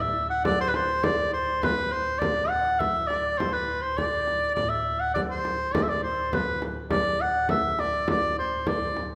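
Bathed in a wet reverb with a 1.5-second decay, this short cut from a longer medieval dance in D mixolydian moves at 102 BPM in a straight 2/4, with a rustic, ancient mood. A clear shawm carries the folk-style melody up front, singing with vibrato and scooped notes, over a soft, hollow stopped-flute pipe organ drone with tremulant sitting low beneath it. A frame drum played with hard hands joins at 0.5 s.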